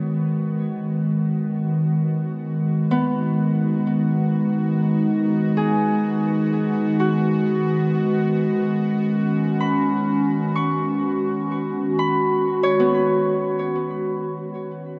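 The recording sits in a vast, echoing space, soaked in a long cathedral reverb that leaves the top end dark and muffled. It is a peaceful, warm ambient fragment in free time, resting in B major with the tuning slightly raised, cut from a longer piece. Up front, a warbly tape-like pad holds sustained chords with a detuned, lo-fi, ring-modulated character, thickened by chorus and its own reverb while a filter sweep moves across it throughout. A Celtic harp, also up front, plays fingerpicked arpeggios with an acoustic, ringing tone, carried further by delay. Beneath them, a quieter bowed-like drone with a tense, string-like sawtooth edge, a noise layer and vibrato fades in from 0.0 seconds, and the whole piece fades out between 12.8 and 15.0 seconds.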